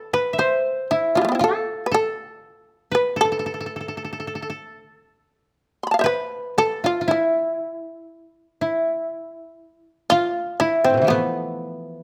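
Japanese traditional chamber music, still and solitary, unfolds in a rubato 2/4 at about 59 BPM in A hirajoshi, with a powerful, buzzing, plectrum-plucked fretless shamisen carrying the melody up front while a dry, woody koto played with fingerpicks supplies a second line, both sounding throughout this 12-second fragment of a longer piece, captured by close, detailed microphones with light reverb as it moves into a new section at 5.5 seconds.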